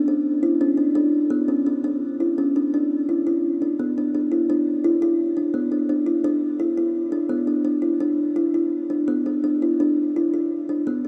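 Drenched in a huge, wet reverb that places it in a vast, echoing space, this hypnotic, restless contemporary instrumental excerpt in 5/4 features a solo kalimba, woody and hollow with a dark, ringing fingertip pluck, playing up front from 0.1 to 11.1 seconds and moving into a new section at 2.7 seconds.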